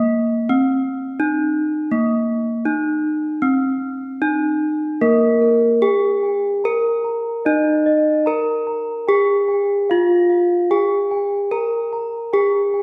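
A bright bronze metallophone struck with a horn mallet carries the melody up front, spanning Bb3 to Bb4 with a ringing, metallic tone from the very first second. This serene, ceremonial gamelan passage moves at 75 BPM in 4/4 with uneven beats, set in Bb slendro and tuned to A4 = 438 Hz. At 5.0 s a second bronze metallophone enters, played with a wooden mallet, adding arpeggios between Bb4 and Bb5 in a darker, smooth voice that sits softer in the mix. Both instruments bloom in the lush reverb of a recital hall, giving the sound the spacious air of a church or concert hall. The clip is cut from a longer piece and ends at 12.8 s.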